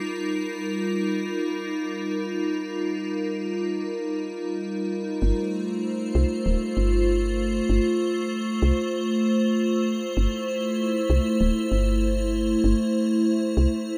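In a straight 4/4 pulse, this intricate, glitchy IDM fragment opens on an icy, crystalline glass pad, detuned and airy with a noise layer, chorus and its own reverb, sustaining an F9sus4 chord. At 5.2 s the harmony shifts to G9sus4 as a woody, round FM bass enters up front with soft, decaying low notes until 13.7 s. A lush hall reverb surrounds the rough home-demo mix, and the piece is cut from a longer work.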